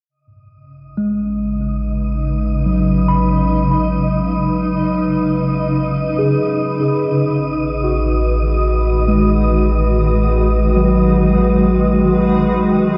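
A slow, straight 4/4 pulse at 72 BPM underpins this luminous, peaceful ambient excerpt, cut from a longer piece and tuned slightly low to A4 = 439 Hz. A mellow tine electric piano opens at 1.0 s with clean, direct arpeggios colored by phaser and analog delay. A deep, rumbling drone holding A1 soon follows; its detuned, warbling, vintage tone sits dark and up front. A wind-like, breathy tuned noise texture fades in high above, while a cloudy granular pad arrives at 1.5 s with blurred, evolving sustained chords under a long filter sweep. The harmony shifts from B9/A to G#m7/A at 6.8 s. The whole mix is echo-heavy and bathed in a wet plate reverb, with the soft grain of cassette tape.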